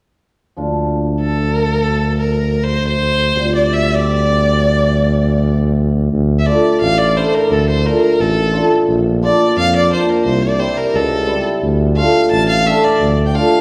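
A mellow, hammered cimbalom and a punchy tuba with light vibrato open this soulful, bittersweet klezmer excerpt in 2/4 at 0.6 s, the cimbalom ringing and shimmering beneath the tuba's smooth-topped bass. At 1.2 s a single bowed violin takes the melody up front, clear and even with vibrato, and the tune moves from a minor opening into a second section at 6.1 s. A wet recital hall reverb places the listener further back in the room, lending the trio a spacious, resonant glow.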